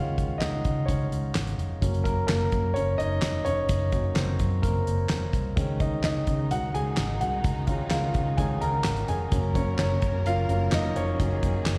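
Driving and earnest, this piano-driven pop cut moves at 128 BPM in a straight 4/4, lifted from a longer piece and heard as a live gig through a venue's PA with a recital hall's light reverb. A concert grand piano carries the accompaniment throughout and is featured as the solo voice, its intimate, polished tone sitting up front with deep bass, audible action noise, and a plate reverb and slapback echo on it. Beneath it, a vintage muted fingered electric bass gives a dark, round, foam-muted electric tone, while a damped 70s drum kit enters at 0.2 seconds with hi-hat, handclaps, a tight kick and a fat snare, dry and mid-forward. At 5.6 seconds a clear studio string section joins in the background with focused, bowed sustained chords full of ensemble vibrato, treated with plate reverb. The harmony moves between Dbsus2 and Gb.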